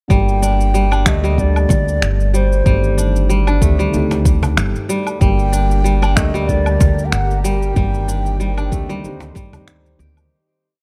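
The upright bass sits up front, its woody, dark pizzicato line played in a dub style, carrying this short, meditative organic downtempo piece in 4/4 with a gentle sixteenth-note swing and an earthy mood. Above it, a bass bansuri with an airy bamboo tone, vibrato and a soft attack sings a close-miked, motif-based melody of arching phrases through a digital delay, while a bright, crisp kora rings out a repeating sixteen-step fingerpicked arpeggio, also through delay. A felt-muted upright piano sits in the background with mellow, vintage held chords and syncopated pushes, pumping with the sidechain along with the bass. The beat layers a deep, soft electronic kick with an electronic cabasa, low woodblock and finger snaps, and a woody cajon in a small room joins in the background at 1.7 seconds with slaps and bass tones. At 5.8 seconds a nasal, string-like drone enters quietly with a slow attack, vibrato and its own reverb, adding a tense, evolving sustained pad as the piece fades out from 6.9 seconds, in a dry, close-sounding mix.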